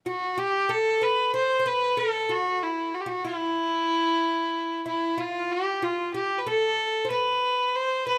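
Closely and intimately recorded with light reverb, this brief, longing and melancholic Turkish excerpt in E makam ussak moves at 188 BPM in a straight 9/8, with a single up-front bowed kamancheh carrying the earthy, lightly vibrato-laden melody while a woody, plectrum-plucked fretless oud with double strings traces a bright second line alongside it from 0.1 to 8.2 seconds.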